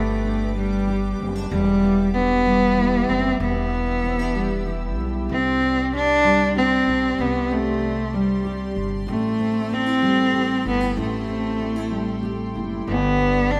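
Swaying and romantic, this six-eight pop ballad is carried by a rich, bowed solo cello that sits up front with vibrato and tape echo, over a full-bodied, double-tracked fingerpicked steel-string acoustic guitar and a woody, thumpy pizzicato upright bass. A lush, detuned synth pad with slow attack and chorus holds sustained chords beneath, and a very quiet, earthy violin section slips in at 12.9 seconds as the harmony returns to G. The sound is a rough home demo mix with light reverb and small room ambience, cut from a longer piece.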